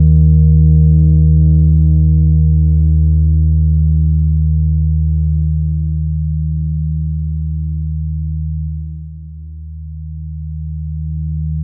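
Unsettling and dark, this ambient fragment, cut from a longer piece, floats in free time with a single deep rumbling drone carrying the whole passage from 0.0 to 11.6 seconds. The drone sits up front, spanning Eb2 to Eb3, its ominous tone blending a nasal edge with triangle and sawtooth colours. Each sound blooms through a slow attack, holds sustained, and fades over a long release, bathed in its own built-in reverb and a diffuse ambient delay. The music shifts into a second section at 8.7 seconds, continuing the same brooding mass of sound. A wet cathedral reverb places everything in a vast, echoing space, letting the low tones hang and smear into a heavy, cavernous haze.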